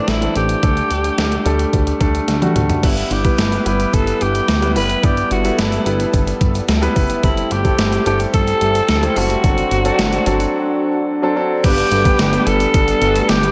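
A straight 4/4 groove at 109 BPM drives this uplifting, nostalgic slice of 1980s-style pop, cut from a longer piece. The clean 12-bit drum machine sits up front with a thumpy kick, a medium-tuned snare, hi-hat, tambourine, toms and crash cymbal, all soaked in gated reverb and carrying a tape-tinged, big-room character. A short drum fill and a later break punctuate the groove. Beneath it, a glossy, chorused synth bass with a pulse-wave edge and filter sweeps anchors the harmony as it moves from Am through Dsus4, Em, Am7/G and D7/G before landing on G. A raspy, growling alto saxophone carries the melody from 0.0 seconds with bright vibrato and a roomy, distant grit, while an intimate concert grand piano with audible action noise and long sustain accompanies it. A lush, airy unison pad and a grainy tube shaker slip in very quietly at 2.8 seconds, and a fat, warbling analog synth brass adds vintage stabs in the background from 11.6 seconds, all set in a moderate plate reverb.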